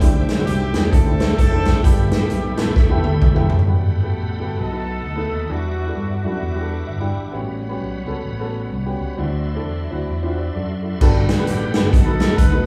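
Soulful and hopeful, this short cut of uptempo gospel swings in four with a lively lift. A woody, slightly detuned upright piano and a fingered electric bass with a punchy, amped tone carry the whole passage, while a bright tonewheel organ holds sustained chords through a slow rotary speaker with chorus vibrato and audible key click. The big-band drum kit sits up front with a medium-tuned snare, crashes and toms, playing through the opening and returning at 11.0 seconds after a fill that closes its first stretch. A smooth-topped horn section carries the melody, a distant jazz trumpet with light vibrato and tape echo joins it briefly in the middle, and a lush, bowed string section adds very quiet sustained chords while the drums rest, with the piano slipping in a fill around 6.7 seconds. The band sounds live in one room, with small room ambience and a moderate studio reverb.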